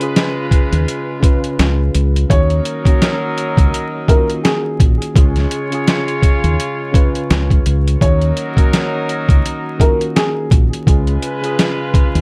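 Boom-bap hip-hop at 84 BPM in Eb minor, this short cut from a longer piece feels reflective yet tough, riding a swung 16th-note groove over a dry mix dusted with vinyl crackle. Gritty, compressed sampler-style drums sit up front from the first second, pitched down with a thumpy kick and a medium-tuned snare alongside the hi-hat. A deep, round fingered electric bass arrives at 0.7 seconds, punchy and direct in the low register. A mellow tine electric piano carries the accompaniment through cassette-tape coloring and filtering, while a distant, roomy horn section adds stabs with light vibrato and tape echo. From 2.3 to 10.5 seconds, a dark, woody upright piano plays the melody with audible action noise and a vintage, intimate character, its tone filtered and trailed by tape echo as the harmony alternates between Db and Ebm7.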